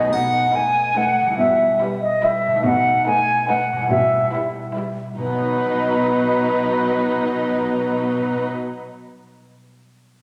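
An airy, up-front silver flute stands out in this playful, quirky film-cue fragment in 3/4, set over ringing fingerpicked harp arpeggios that carry on to 9.4 s, a close, muted cello section on the bass, a veiled viola section in the background and two con sordino violin sections entering at 0.5 s (one lush on a second line, the other very quiet on the melody), with a bright triangle touch at 0.1 s and a wet scoring-stage reverb.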